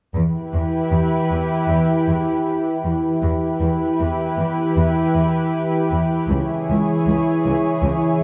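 A straight 4/4 pulse at 78 BPM underpins this brief cinematic excerpt in E dorian, tuned slightly low, with a relentless, tense mood carried over an Em chord that shifts to C#m at 6.3 seconds. An up-front, detuned synth pad with chorus holds sustained chords from E3 to C#5, its thick sawtooth and square-wave tone warbling with a vintage character, while a symphonic cello section bows a smooth, vibrato-rich bass line between C#2 and E2 until 7.9 seconds. A moderate scoring-stage reverb gives the parts a sense of space.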